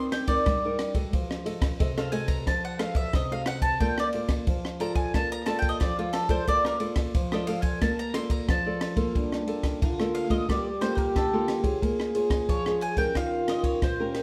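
Heard from further back in a moderately reverberant studio, this bittersweet, lively samba and choro piece at 90 BPM sets a woody, double-strung mandolin melody with slapback echo and plate reverb over fingerpicked classical nylon-string guitar and a dry cocktail drum kit with punchy kick, dark ride cymbal and rim click, then shifts from Bb major to G minor at 9.1 s, where a breathy, jazz-style trombone enters at 9.2 s with scooped notes as a mellow second line.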